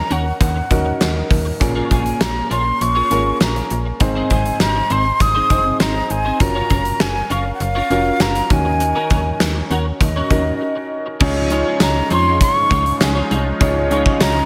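Dramatic and nostalgic, this 1980s-style pop passage sets a breathy, mellow silver flute melody with digital delay over clear concert grand piano chords, a snappy FM bass with a metallic attack, a compressed twelve-string electric guitar riff shimmering with chorus and delay, and a punchy gated drum kit with a fat snare, bright cymbals and tambourine, all in a lush hall, until a brief break at 10.6 seconds gives way at 11.2 seconds to an airy, detuned sawtooth pad sustaining chords in the background.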